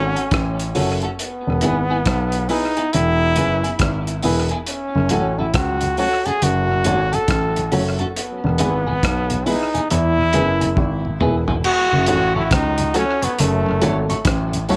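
Meditative and hypnotic, this roots reggae excerpt at 69 BPM in F# dorian sets a brilliant, forceful trombone melody with vibrato up front over a dark baby grand piano bass with audible action noise, a woody upright piano playing stabs and a twangy clean electric guitar with lush chorus in the background, a muffled, cloth-damped drum kit entering at 0.2 s with a fill at 10.8 s, and a round tonewheel organ on slow rotary speaker joining at 4.9 s, with tape echo on the trombone, guitar, drums and organ, all within a moderate spring reverb, as F#m and E alternate.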